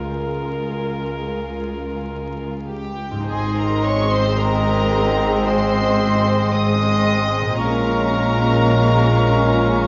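Uplifting and tender, this cinematic film score for orchestra moves at a rubato 52-57 BPM in 4/4 and Ab major, cut from a longer piece. A dark, woody violin section carries the melody high in its range, bowed sul tasto with vibrato and a lush, distant tone. Beneath it, a clear cor anglais, a mellow clarinet sitting in the background and a second violin section with a pure, floating quality weave second lines. A dark chamber viola section adds soft accompaniment, mellow French horns hold roomy sustained chords, and a very quiet concert harp rings out fingerpicked arpeggios. A rich double bass section and an intimate, close cello section anchor the bass, and at 3.3 seconds a bright, crisp flute enters with a high second line as the harmony moves from Db6 to Abadd9, later reaching Bbm7 at 7.6 seconds. The whole is bathed in a wet scoring stage reverb, with vinyl crackle and a softened top end.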